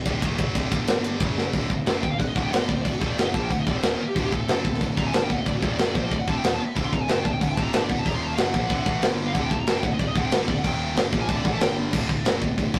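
Up front sits a tight acoustic metal drum kit with a warm, mid-forward sound, a medium-tuned snare, a tight kick and a rolled-off top, driving crash and ride cymbals through a dark, aggressive heavy metal excerpt at 185 BPM in 4/4. The cut opens in half time, and a drum fill at 1.4 s kicks the band into full tempo, with the guitar solo beginning at 1.5 s. Two bright, distorted high-gain rhythm guitars play the riff, one picked and heavy, the other scooped and set further back, with a growly, overdriven picked bass under them. From 2.0 s a darker, distorted high-gain lead guitar solos in the upper register over a riff centred on D, with chord changes to G5, F#5 and Eb5. The whole take has a rough rehearsal-room character, with tube saturation and a moderate stone-room reverb.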